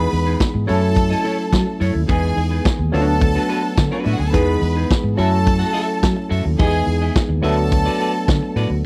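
A glamorous, joyful disco groove at 107 BPM opens with a lush, vibrato-rich string section carrying a slapback echo over barky tine electric piano, clean semi-hollow electric guitar and growly fingered bass, joined at 0.1 seconds by a punchy vintage drum kit of kick, snare and hi-hat, all cycling through Emaj7, F#m7 and D6 chords in a dry, close 1970s-style studio sound cut from a longer piece.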